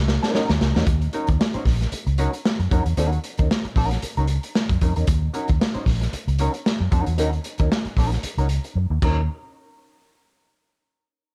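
A muted, round electric bass opens at 0.0 in the low register, joined almost at once by a gritty breakbeat drum kit playing a short fill. This is a hypnotic, cool funk groove in Eb minor at 114 BPM, with a light 16th-note swing, and it rests on a single Ebm7 chord throughout. The foam-muted bass has tube saturation and sits up front beside the kit, whose tight kick, medium-tuned snare, hi-hat, crash and dark cymbals have a saturated, rolled-off character in a studio room. Lower in the mix, a clean hollow-body jazz guitar plays fingered accompaniment through a wah, in a mid-to-upper range. A second drum fill starts at 8.8 seconds, and the parts stop at 9.3 seconds, where the harmony drops away. The production is dark and warm, with little reverb, and the piece is cut from a longer performance.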